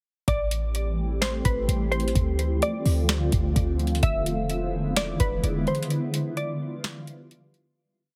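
Atmospheric cloud-rap hip hop with an ethereal, hazy mood, built on a half-time beat from a booming analog drum machine with deep kick, crisp snare and metallic hats and fast hi-hat rolls, long clean 808-style sub-bass notes that follow the kick until 5.7 seconds, a shimmering, detuned ambient pad with phaser and sidechain pumping, and a sparse, glassy wavetable pluck melody looping like a sample, all under light reverb and a heavily compressed radio sound before a break and fade-out from 5.9 seconds.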